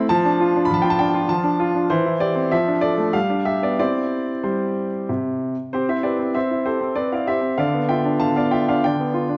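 A clear, intimate baby grand piano opens this playful, graceful excerpt of a classical-period sonatina in three, its close-up sound carrying audible action noise and long sustain inside a dark, wet recital-hall reverb as it moves from Dm/F through C/E and G7 to C, then begins its opening phrase again at 5.7 seconds and reaches G7/D before the cut at 9.4 seconds.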